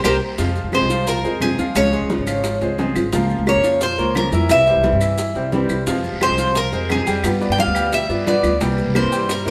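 Cuban son and guajira in a sultry, nostalgic mood, cut from a longer piece, opening on a drum fill and band accent as the bright, metallic Cuban tres carries the melody up front over boxy, fingerpicked nylon-string guitar, clear grand piano arpeggios, dark, thumpy pizzicato upright bass, and a percussion bed of soft-handed congas, very quiet low-tuned bongos, woody claves, grainy, close maracas and a raspy, distant guiro that returns at 5.9 s, the band playing live in a wet stone room.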